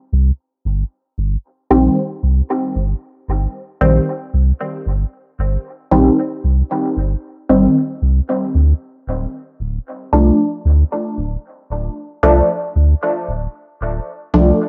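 Cavernous and hazy, this 114 BPM dub techno excerpt in C dorian, swung on the 16ths and tuned to A4 = 442 Hz, sets a deep, round sine sub bass with tube saturation, entering at 0.1 s, beneath a muted, detuned sawtooth chord stab arriving at 1.7 s, its resonant filter pluck and moving notch shaded by phaser, cassette tape grain and dub echo, as the harmony shifts from Cm to Dm at 8.3 s within light reverb and a homespun cassette sound.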